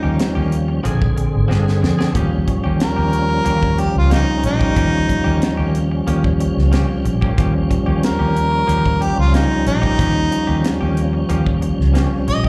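A straight-eighth soul blues groove in 4/4 carries this swaggering, gritty clip from a longer live club set, where a tight funk kit with a high-tuned snare comes in at 0.2 s and plays a fill just before the shift from Eb9 and Bb9 back to Eb9 at 2.2 s. An up-front, overdriven harmonica leads with a soft attack, scooped notes and a smooth top in a jazz-style solo, over a full tonewheel organ with slow rotary speaker and chorus vibrato and a round, foam-muted vintage bass. Quieter stabs from a bright, twangy, direct-recorded clean guitar bathe in spring reverb and slapback echo, all heard through the venue's PA with club reverb.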